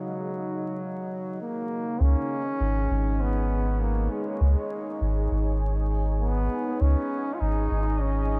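Light reverb and a small-room ambience frame this short, spacious ambient dub excerpt, with vinyl crackle drifting beneath it at 100 BPM in 4/4, its sixteenths lightly swung, in Db mixolydian. A smooth-topped solo trombone carries a classical-style melody up front, roughened by vintage 12-bit sampler grit and dub echo, while a dark, moody pad of detuned sawtooth unison with a sine sub octave holds mellow chords through chorus and reverb, moving from Ebmadd9/Db to Db5. At 2.0 s a round, soft sub bass enters prominently, adding a deep, sustained foundation to the hazy mood.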